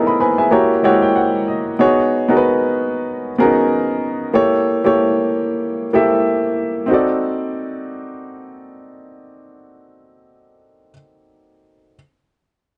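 A dark, intimate recording with light reverb frames a woody upright piano playing solo and up front, its action noise audible, in an introspective, late-night R&B passage at 94 BPM with swung sixteenths, opening with a fill over the first 1.8 seconds and moving through rich chords such as C#m9, F#7b9, B69 and A7b9 before arriving at D7b9 at 6.9 seconds.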